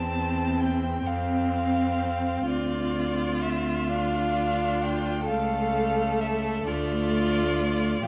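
In a rubato 6/8, this short, solemn and melancholic fragment of a slow romantic string quartet movement places a smooth, distant first violin melody up front over a focused second violin line, a viola accompaniment sitting in the background, and an even, rich cello bass, each bowed with vibrato by a single player in a dark production with moderate scoring-stage reverb.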